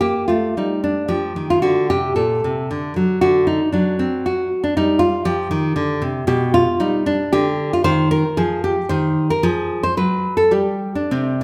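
A reverberant recital-hall sound, like a church or concert hall, surrounds a full-bodied, up-front nylon-string guitar playing alone in this short cut from a longer classical piece. The solo guitar is fingerpicked through a flowing, solemn baroque-style dance in 3/4 at 114 BPM in G minor, with a rubato feel and a range from Bb2 to C5. Its harmony moves from G minor through D, G and G/B to an Eb6/9 before the chords fall away at 9.4 seconds, and the piece runs to 11.4 seconds.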